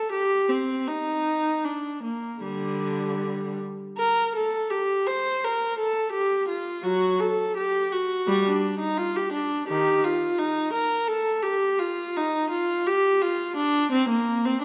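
A lone bowed viola, rich and close with smooth vibrato, sings a flowing, introspective baroque-style suite movement in a freely rubato 4/4, its even line held up front amid the lingering reverb of a recital hall throughout this 14.6-second fragment of a longer classical piece.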